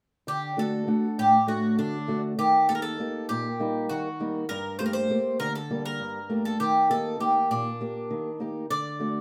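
This short excerpt sits in a small, reverberant room that gives the close, up-front instruments a brief halo of ambience. It is Greek folk in a bittersweet, brooding mood, moving briskly at 199 BPM counted in eighths, in an asymmetrical 7/8 with a straight feel, in D phrygian dominant and tuned slightly high to A4 = 441 Hz. A bouzouki carries the melody between D4 and D5, its bright, metallic double strings, some doubled at the octave, ringing with a picked edge. Beneath it, an old ladder-braced acoustic guitar, fingerpicked on old strings, supplies a dark, woody, boxy accompaniment ranging from G2 to F#5. Both instruments play together from 0.3 to 9.2 seconds through a single passage whose harmony moves from D to Eb, on to Gmadd9, back to Eb and home to D.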